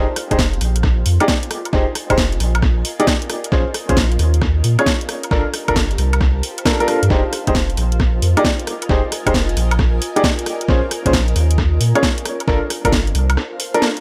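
UK garage in a two-step style, moody and bouncy, rides a swung groove of hi-hat, rim click, cracking snare and woodblock from a tape-warm garage kit with analog delay, over an overdriven, knocking electronic kick. A boxy, intimate grand piano plays stabs with audible action noise and analog delay across minor seventh and ninth chords, while a deep, thick, saturated sub bass sits up front and a cloudy granular pad drifts behind with its own reverb and sidechain pumping. The echo-heavy mix breaks at 13.4 seconds, with a band accent at 13.8 seconds before this section of a longer piece cuts off.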